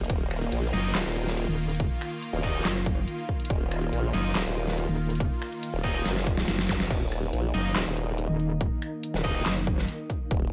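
A metallic, FM-flavoured wobble bass dominates this chaotic, aggressive slice of heavy wobble dubstep, entering at 0.7 seconds with saturated, compressed weight and a touch of chorus and overdrive. Alongside it, a formant-sweep wobble bass built from detuned sawtooth and sine tones growls through its formant filter, both basses sitting up front in a half-time 4/4 groove. A punchy, tape-warm electronic kick and a layered dubstep kit with a deep snare, metallic hats, handclaps, finger snaps and crash cymbal drive the drop, with a drum fill from 6.1 to 6.9 seconds just before the drop restarts. Overdriven, picked electric guitar stabs cut through brightly with dub echo, while a lush supersaw pad of detuned unison sawtooth voices holds slow-attack chords under phaser, low-pass filtering and sidechain pumping. A brief electronic zap flickers in the background at 6.7 seconds, and the dry, close mix keeps every hit immediate in this excerpt from a longer piece.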